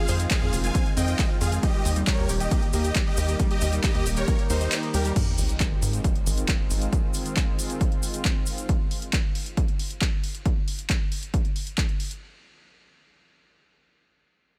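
A straight 4/4 pulse at 136 BPM drives this bittersweet uplifting trance fragment, built on a punchy, up-front electronic kick, tape-warm analog drum machine hits of crash, handclaps, hi-hat and ride, a grainy tube shaker in the background, and a tight sawtooth sequencer bass pumping under sidechain compression. Huge, lush detuned supersaw chords carry the melody through phaser and delay over Fm7 and Eb, while a round, warbling vintage pluck plays arpeggios through chorus and dub echo further back. The kick drops out at 4.7 seconds, and at 5.2 seconds a very quiet sub drop impact marks the move to Ab6 as the supersaws and pluck fall away, leaving drums, shaker and bass in a dry mix with little reverb.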